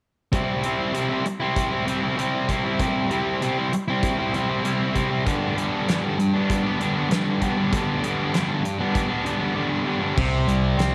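A sludgy, double-tracked electric guitar and a huge arena drum kit start together at 0.3 s in this driving, confident classic rock excerpt, moving at a straight 97 BPM in 4/4 in C major, tuned slightly flat to A4 = 439 Hz. The overdriven guitar sits up front, picking a riff that moves from C to G at 5.3 s. The acoustic kit has a big-room sound, with a fat snare, a punchy kick, hi-hat and crash cymbal. At 10.2 s a dark, round, amped electric bass joins on a low C as the harmony lands on a C5 power chord. A moderate spring reverb with a 2.2-second tail gives the recording a roomy sheen.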